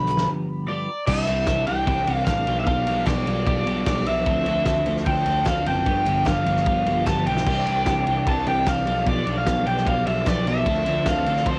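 A straight 4/4 pulse at 150 BPM drives this upbeat, carefree indie rock excerpt in C major, cut from a longer piece and recorded at home on cassette with light reverb. It opens with a brief solo and break from the bright, overdriven lead guitar, which sits up front and then carries the melody over a clean, twangy, double-tracked twelve-string electric guitar riff. Beneath them a dark, round fuzz bass punches through, while a loose, saturated drum kit with a fat snare, punchy kick and rolled-off top drives the groove, dusted by very quiet, crisp group handclaps. A delicate, tinkling FM synth bell adds a warbling second line from 0.7 seconds, and a reedy tonewheel organ with key click and slow rotary speaker enters with sustained chords at 7.5 seconds. The chords cycle through G7, Cadd9, G7/B and Dm7, keeping the mood light and sunny.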